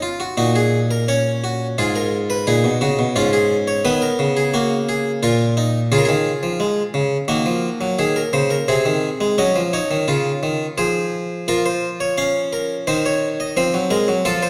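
A recital hall's wet, lingering reverb surrounds a close-miked harpsichord that sits up front, its plucked tone bright and full yet dry at the source. This is a solemn, contemplative baroque-style fugue in three parts, cut from a longer piece, played on a solo French-style harpsichord with a single set of strings, reaching from G#2 to F5. Set in a straight 4/4, the opening section moves through a steady, stately chain of chords, with the three voices unfolding over a sober harmonic path. At 11.5 s the music shifts into a new section with a darker harmonic colour, ending on a diminished chord that leaves the passage unresolved at 14.5 s.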